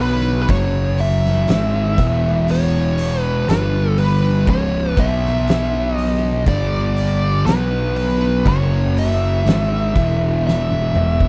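Stoner and doom metal at a slow 60 BPM in 4/4, ominous and hypnotic, cut from a longer piece and set in a small room ambience. Two dark, thick fuzz guitars grind out the riff in the background through chords such as F#5, Emaj7/G#, G5 and B5, while an overdriven, fuzzy picked electric bass sits up front and a distorted lead guitar carries the melody between B4 and E5 with wah and slapback echo. An oversized, low-tuned acoustic kit enters at 0.5 seconds with a boomy kick, fat snare, hi-hat and toms in a pumping, gritty room sound, closing on a drum fill from 10.5 seconds.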